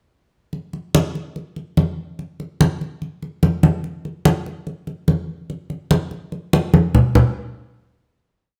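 Up-front, low-tuned congas with a thick skin and soft hands, high and low drums mixing slaps and open strokes, carry this warm, sultry Latin piece at a straight 145 BPM in 4/4, vamping a montuno from 0.5 seconds through a drum fill at 6.5 seconds into a final hit at 7.2 seconds, all set in a moderate large-studio reverb.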